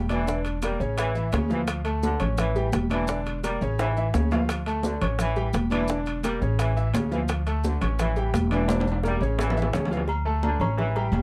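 A driving, danceable salsa groove moves in straight 4/4 at 171 BPM, built on ringing, high-tuned congas struck with hard hands, tight bongos and cowbell, metal-shell timbales with agogo bells, and grainy, mellow maracas sitting in the background until 10.1 seconds. This cut from a longer piece is in D harmonic minor, cycling through Em7b5, A, Dm and A7 before landing on a D5 at 10.1 seconds, with drum fills at 3.8 and 8.7 seconds. A woody, growly upright bass, played pizzicato on steel strings, sits up front with a dark tone. A bright upright piano carries the accompaniment with an intimate, polished sound, short sustain and audible action noise. A brilliant trombone section plays a tight second line in a low register, its vibrato and soft attack lending a vintage, pop-style colour. Light reverb surrounds the ensemble, captured by close, detailed microphones.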